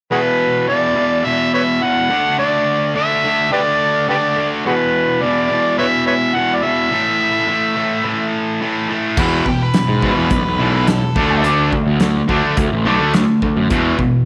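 Sunny and confident, this classic rock clip opens with a gritty, amplified harmonica carrying the melody with light vibrato and tongue slaps over a bright, compressed electric guitar riff moving through E5, D5 and A5 power chords. As the harmonica drops out at 8.3 s, the band kicks in at 9.2 s: a second picked guitar riff sits in the background, a growly fuzz bass pushes up front, and a big, dark, smooth acoustic drum kit adds a punchy kick, cymbals and a medium-tuned snare. A dark octave-fuzz lead guitar with tape echo adds a brief second line until 11.4 s, all framed by light reverb and small room ambience.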